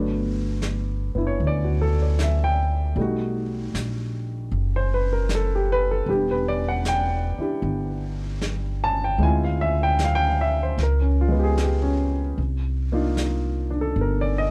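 Jazz ballad in G major at 76 BPM with a gentle swing, late-night and romantic in mood, cut from a longer piece. An intimate baby grand piano with audible action noise and short sustain comps through rich chords from Gmaj9 to Cm11, while a woody pizzicato upright bass sits up front alongside it. A vintage kit played with brushes, its snare medium-tuned and its top rolled off, joins at 0.6 s in a small, dry room, giving the whole a dark, close sound.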